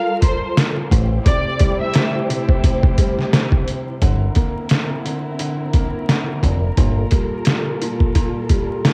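A gritty, cassette-worn home recording with vinyl crackle and small-room ambience carries this reflective boom-bap hip-hop excerpt at 87 BPM with a swung feel, where a clear, lush violin section sings a brief melody over smooth studio strings holding sustained chords while a compressed, pitched-down sampler drum kit with a thumpy kick sits up front, a round, deep dub fingered bass plays from 0.9 to 7.0 seconds, and a dark, woody upright piano enters at 1.3 seconds to accompany chords moving from Gm9 through Am7 to C9/G.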